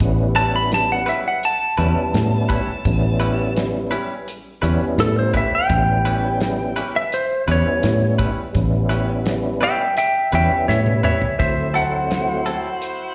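A straight-eighth soul blues groove at 84 BPM in A mixolydian rolls along on a damped, dry 70s drum kit with a tight kick and a round, foam-muted fingered bass sitting up front, while a fat tonewheel organ with key click, chorus vibrato and a slow rotary speaker fills in the chords beneath. A twangy, compressed lap steel carries a soulful slide solo through the whole excerpt, and a bright, direct-recorded clean electric guitar adds picked stabs, both bathed in plate reverb and slapback echo. After a drum fill at 10.7 seconds, the harmony moves from A9 to D9 at 11.4 seconds as a smooth-topped horn section enters with sustained chords, all heard through a venue PA in a recital hall's reverb.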